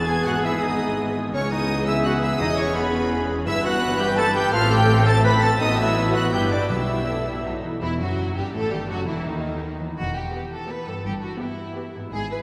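Urgent and dramatic, this classical excerpt in brisk 3/4 at 167 BPM settles into E minor, with a lush, vibrato-rich violin section carrying the melody over a second violin section, a smooth viola section, and a cello and double bass section anchoring the bass. A clear oboe, a warm clarinet and an airy, hollow flute ensemble weave second lines in the background, alongside sustained chords from the French horn section, dark trumpet stabs and a very quiet ringing concert harp playing arpeggios, while soft timpani strokes mark 2.4 s and 6.7 s. The winds, horns and trumpet drop out by 7.8 s, leaving the strings and harp to close the passage in a spacious church reverb.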